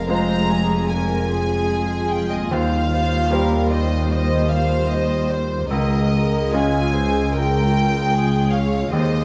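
Bittersweet and full of longing, this short excerpt from a cinematic, emotional film score unfolds at a rubato 75 BPM in 4/4, moving from F minor through Cm/Eb to Dbadd9. A soft-attack violin section carries the floating, sul tasto melody over a second violin line, while a bright, brilliant concert grand piano and dark, woody violas supply accompaniment and a very quiet, mellow harp rings out arpeggios. Beneath them, an intimate cello section and rich, bowed double basses anchor the bass, all captured with close, detailed microphones and light reverb.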